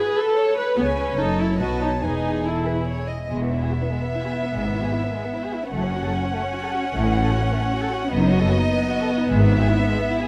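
Violins carrying a graceful melody over an up-front, rich viola accompaniment open this cheerful, quick classical-period string orchestra passage in 3/4 at 149 BPM in E major, with a second violin line joining at 0.8 s alongside a pure, floating cello section and a clear double bass, all bowed sul tasto with soft attacks and loose rubato, captured by close, detailed microphones in light reverb.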